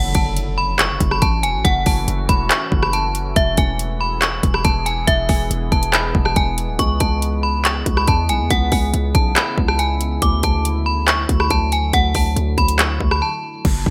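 A ringing, inharmonic FM bell carries the melody up front over a brooding, menacing half-time trap groove, joined by a punchy 808 bass, a detuned dark ambient pad holding sustained chords, a trap kit with a hard-clipped kick, metallic hats, claps, rim clicks and crash under gated reverb, and a very quiet impact at the start and a downlifter at 13.6 seconds, where the hi-hats fall silent, all in bright 1980s-style digital production.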